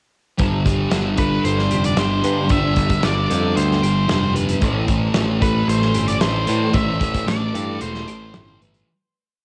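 Blissful and hazy, this short shoegaze and dream pop piece drifts along at 113 BPM in a straight 4/4, sitting in G mixolydian as it moves from Gsus4 to Am7 at 4.6 seconds. Up front, a thick, dark fuzz guitar strums distorted chords through analog chorus, dipping them with the whammy bar, while a growly, direct electric bass drives steady eighth notes underneath. A loose indie drum kit in a small room lays down a pop groove of tight kick, medium-tuned snare and hi-hat, its sound coloured by cassette tape. Very quiet in the background, a clean, twangy electric guitar adds scooped volume swells, and a bright, compressed twelve-string electric guitar rings out a twangy arpeggiated ostinato. From 1.2 seconds an octave-fuzz lead guitar sings short song-like motifs, coloured by tape echo and cassette grit, before the whole home-recorded piece, bathed in light reverb, fades out from 6.7 seconds.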